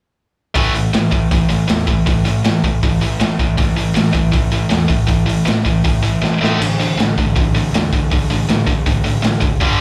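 A tight, distorted electric guitar opens this short punk rock fragment at 0.5 s, its bright, picked riff ringing on an A5 chord. The bass and drums join a moment later. The drums bring a punchy kick, a medium-tuned snare, hi-hat and crash, and they sound gritty and saturated, with a rolled-off top and a pumping small-room quality. The picked electric bass sits in the background with a bright, direct tone, while guitar and drums stay up front. At a straight, driving 159 BPM in 4/4, the mood is energetic and upbeat, and a drum fill between 6.2 and 6.6 s arrives as the harmony shifts to D5/A. The whole piece sounds like a live club gig heard through the venue's PA, with a light touch of room reverb around the band.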